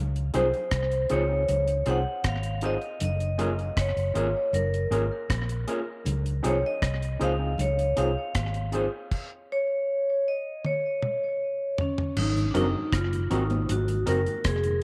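Lovers rock reggae with a sweet, smooth mood, heard as a short cut from a longer piece. A vibraphone with medium hard mallets carries the melody up front, its metallic, ringing tone colored by motor vibrato and tape echo. Beneath it, a dark, round, foam-muted fingered electric bass sits punchy and close. A deep reggae drum kit with a tight kick, hi-hat, rim click, toms and crash cymbal carries slapback echo, joined by high-tuned congas set distant in the background and by clean, fingered electric guitar stabs. A worn, slightly out-of-tune tine electric piano with light overdrive fills in quietly behind, as the chords move from Dbmaj7 to Gbmaj7 and back before a drum fill at 10.6 s. At 12.2 s the harmony turns to Ab9, and a very quiet tonewheel organ with chorus vibrato and rotary speaker enters at 12.4 s, the whole mix sitting in a wet spring reverb and small room ambience.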